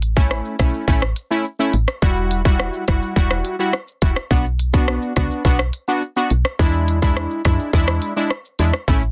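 A dry, dense and heavily limited modern master frames this hypnotic, tough dancehall cut, taken from a longer piece and moving at 105 BPM in a straight 4/4. An electronic, produced island pop drum kit sits up front, with a tight kick, smooth hi-hats, rim click and shaker running from 0.0 to 9.1 seconds. Beneath it, a woody FM bass offers a soft, round, mellow tone with a fast attack that decays, spanning E1 to F#2. Entering at 0.2 seconds, a synth brass stab carries the accompaniment: brassy, punchy and bright, built from detuned sawtooth and wave-folded triangle tones with a filter pluck, treated with chorus and placed up front. The harmony moves from A to Emadd9, then Bm and E7.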